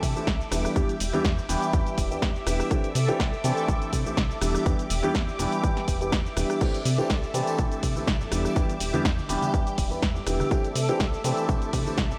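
Filtered disco house at 123 BPM in 4/4, this joyful, funky excerpt from a longer piece sits in C major with a light 16th-note swing, moving between C69 and Em7 chords throughout. An up-front electronic kick, layered and tape-warm with the feel of a small room, drives the groove alongside a dry, punchy analog drum machine supplying crash cymbal, hi-hat, rim click, shaker and snare, its hats, percussion and cymbals pumping against the sidechain. A plucky analog bass mixes sawtooth and pulse-wave tones with a fast-attack filter pluck and a moving notch, thickened by tube saturation. A dark, mellow concert grand piano plays accompaniment in the middle register through a phaser, while a lush string machine holds sustained chords higher up, its slow attack, sub octave and ensemble chorus roughened by vintage 12-bit sampler grit. Both also pump with the sidechain. At 6.6 seconds, bright, band-limited tambourine and congas with soft hands join in the background. 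A light reverb sits over the whole arrangement, and the kick and drum machine carry a studio ambience.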